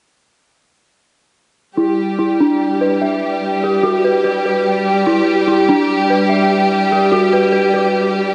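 Smoky and cinematic, this short trip hop passage opens at 1.8 seconds with a lush, woody string section holding sustained bowed chords, close and up front with vibrato. Alongside it, an eerie, detuned FM synth bell plays arpeggios with a fast attack and decaying tail, its mellow tone thickened by chorus and tape echo as a low-pass filter sweep moves across it until both parts stop at 8.3 seconds. A moderate echo chamber reverb lends the pair a lingering space with a softened top end.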